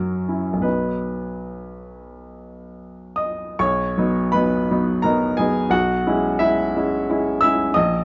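A rubato 3/4 sway, drifting between 56 and 91 BPM, carries this nostalgic, tender excerpt of a romantic classical nocturne in B major, where a polished, up-front baby grand piano plays alone from A#1 up to E6, moving from an opening F#7 to B and later to C#m7/B, with a new section arriving at 3.6 seconds, all set in a moderate studio reverb with a dark, warm production.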